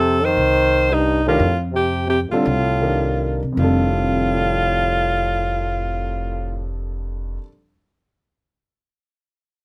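Opening on an F13 chord, a clear, punchy alto saxophone carries the melody over a distant, roomy trombone second line and a woody, growly pizzicato upright bass in this spiritual, hypnotic modal jazz excerpt in swung 3/4 and F mixolydian at 149-176 BPM, slowing down from 1.4 to 3.6 seconds, as an intimate concert grand piano with audible action noise and long sustain enters as accompaniment at 1.3 seconds within a moderate studio ambience.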